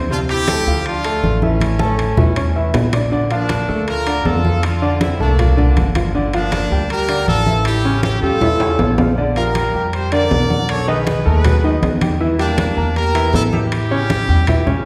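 A fiery, driving salsa excerpt at 159 BPM in a straight 4/4, moving from Dm7 through Bbmaj7, Gm7 and A7 before a late turn through B7 and Em7b5 back to A7. A brilliant, punchy horn section carries the melody up front, its tight pop-style attack riding over a clear, present baby grand piano that fills in the accompaniment. Underneath, a woody, growly upright bass played pizzicato gives the low end a dark, thumpy weight. Low-tuned congas with a thick skin sit back in the mix, while ringing metal-shell timbales round out the percussion, with drum fills arriving from 1.6 to 3.1 seconds and again from 8.4 to 9.2 seconds. The whole band sounds as if captured in a church or concert hall, with a recital-hall reverb lending a roomy bloom to the ensemble.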